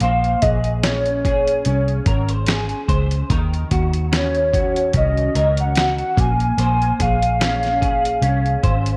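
This hazy, wistful stretch of indie bedroom pop, cut from a longer piece, opens with all four parts together: a warbling synth lead carries the melody over a bright, twangy electric guitar heard through a small old amp, a foam-muted picked bass and a sampler-style drum kit. The lead blends square, sawtooth and triangle tones with a soft attack and sustained, mellow notes, its vibrato, analog chorus and slapback echo giving it a nostalgic glow. Sitting lower in the mix, the slightly broken-up guitar shimmers under ensemble chorus and a wavering pitch drift. The dark, round bass and the gritty, compressed drums, with a thumpy kick, medium-tuned snare and hi-hat, sit up front and carry a lazy 16th-note swing. The harmony moves from Bbm9 to Ebm7 at 3.3 seconds and back to Bbm9 at 6.2 seconds, all within a light, digital-sounding ambience.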